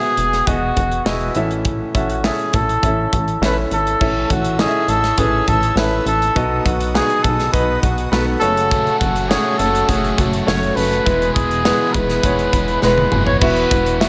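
A warm trumpet with vibrato carries the melody up front in this uplifting, piano-driven pop piece, its solo line marked by slapback echo and a roomy, distant character. A brilliant concert grand piano with deep bass and short sustain plays the accompaniment throughout, while an acoustic studio kit with a tight kick and medium-tuned snare drives the straight 4/4 groove, and a plucky, mellow analog bass sits low beneath it. At 4.0 seconds a very quiet chamber string section adds earthy, bowed sustained chords with a smooth top, and an overdriven, double-tracked semi-hollow guitar enters with a picked riff at 8.7 seconds. A drum fill at 12.8 seconds leads toward the closing Esus2 chord, after a progression that moves through A, B, F#m and E. A lush hall reverb gives the mix a big arena sound, and the passage is cut from a longer piece.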